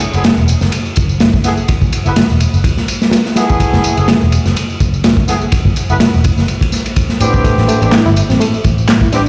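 A swaggering, raw breakbeat groove at 125 BPM with a swung 16th-note feel drives this short cut, led by a crunchy, saturated drum kit with a punchy kick, dark cymbals and a rolled-off top, sitting up front over tape-warm electronic tambourine and handclaps. A round, foam-muted picked electric bass anchors the low end while a smooth horn section with light vibrato fires delayed stabs over an F#m11 chord. At 7.4 seconds the harmony shifts to Am11 and a reedy electric piano enters with a fast tremolo and digital delay, all heard through a stone-room reverb as if blasted from a big sound system in a bare space.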